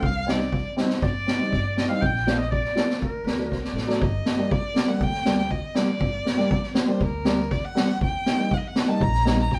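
Bittersweet yet festive, this klezmer excerpt in a straight 4/4 sets a dark, bowed violin melody with vibrato and portamento over a mellow, woody upright piano, a thumpy pizzicato upright bass on gut strings and an up-front street-band drum kit with a boomy kick and high-tuned snare, while a clear, vintage clarinet carries a second line until 3.7 seconds, overlapping a drum fill from 3.5 seconds that leads into a new section at 4.0 seconds, all played live together in one room with moderate reverb.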